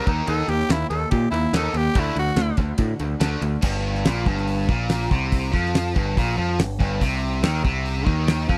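A dry, close studio sound in the 1970s style puts every part up front in this driving, confident slice of classic rock in straight 4/4, cut from a longer piece. A raspy, growling tenor saxophone opens with a short solo carrying the melody, its edgy tone touched by light vibrato before it drops out at 2.6 seconds. Beneath it, a double-tracked overdriven electric guitar plays a picked riff throughout, bright and up front, while a picked electric bass, bright and amped with its own overdrive, holds down the low end. The damped drum kit sounds polished and airy, with a fat snare, a tight kick, hi-hat, and dark crash and ride cymbals. The harmony moves from Eb5 to D, then shifts to Gm7 as a new section begins at 3.6 seconds and settles on Cm near the close.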